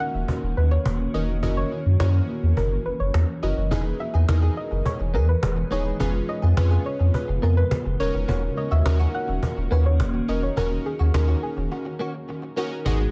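A soft, round pluck carries the melody from the opening moment, joined by glassy digital keys and a blurred, granular cloud pad that sustains the chords, with chorus and tape echo on the pluck and keys and the pad sitting in its own reverb. A deep, sine-like sub bass arrives almost immediately and sits up front as the mix's loudest part, and a snappy acoustic cajon with snares, heard in a live room and touched by tape echo, comes in at 0.3 seconds. This is a driving yet bittersweet dance-pop excerpt at 105 BPM in 4/4 with a straight feel, moving through D#m7, F#7, Emaj7 and C#7/E# before returning to D#m7. At 3.7 seconds a clean, bright electric guitar, recorded direct and compressed, adds a picked riff low in the balance, dressed in ensemble chorus and tape echo. The whole piece is bathed in echo and light digital ambience, and a break begins at 11.7 seconds just before the fragment is cut off.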